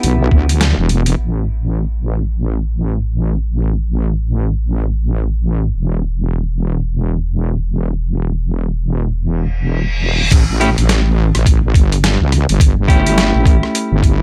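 A heavy, up-front wobble bass runs through this gritty, playful glitch hop excerpt at 105 BPM in 4/4, its detuned sawtooth tone saturated and thickened with chorus, sitting low from E1 to D2 over a swung 16th-note feel. The opening moment, with an Em7 chord, brings in a dark, scooped clean electric guitar playing stabs with subtle chorus, sidechain pumping and dub echo, alongside a compressed, pitched-down sampler-style drum kit of crash, hi-hat, rim click and a medium-tuned snare, with a brief thumpy electronic kick and a band accent at 0.6 seconds. From 1.2 seconds the harmony drops away and the wobble bass carries the passage alone until an electronic reverse cymbal enters at 9.5 seconds. The drop hits at 10.3 seconds on an A7 chord, bringing back the gritty drum kit and the compressed kick with small room ambience, and the guitar stabs rejoin shortly after. The mix is dry, with the kick and bass dominating.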